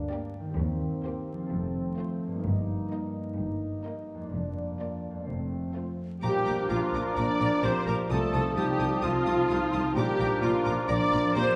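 A rich, lush viola section sits up front with bowed accompaniment in this magical, quirky cinematic cue, joined from the opening by mellow, distant French horns holding sustained chords, bright, ringing harp arpeggios, a violin section carrying a smooth melody beneath an expressive second violin line, and, from 0.6 s, cello and double bass sharing the bass, until at 6.2 s a dark, punchy cor anglais, clear clarinet, pure flute, bassoon and a very quiet tuba add their own parts, the ensemble set in a wet scoring-stage reverb with vinyl crackle.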